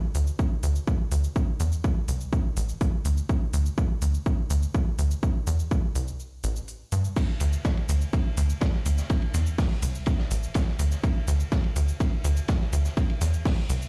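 A straight 4/4 pulse at 124 BPM drives this dark, hypnotic melodic techno excerpt, where a tight, punchy sawtooth sequencer bass with tube saturation and sidechain pumping runs from A1 to G2 beneath a heavy, overdriven electronic kick and an overdriven techno kit of crash, smooth hats and shaker, all set in a bare room on a big sound system with large studio reverb, until after a break from 6.2 to 7.2 seconds a gritty, saturated breakbeat kit with a high-tuned snare, dark cymbals and a rolled-off top joins at 7.2 seconds.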